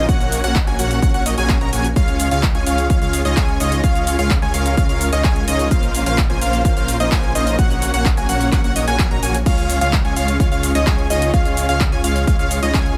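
Anthemic and uplifting, this festival progressive house excerpt drives at 128 BPM in Db major, with a punchy electronic kick and a big-room dance kit of crash cymbal, handclaps, metallic hi-hat, and shaker that has a small-room character. A huge, euphoric supersaw lead carries the riff while a catchy plucky lead with a filter sweep spins arpeggios above it, both pumping with sidechain and trailing tape echo. Underneath, a thick, menacing detuned saw bass also pumps, and a very quiet, lush chorused pad sustains chords moving from Gb/Bb to Db, Bbmadd9, and back, all under light reverb.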